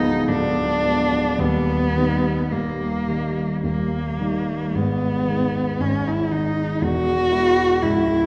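A wet, spacious scoring-stage reverb with a 2.1-second decay surrounds this brief, elegiac fragment of a romantic classical duo, heard from further back in the room. In G# minor and a slow, rubato 3/4 at about 53-60 BPM, a single warm bowed cello carries the melancholic melody up front with soft attacks, expressive vibrato and portamento. A dark, mellow baby grand piano with a smooth, vintage tone and long sustain accompanies it, moving through a diminished seventh chord, D#, G# minor and E across the 8.3-second passage.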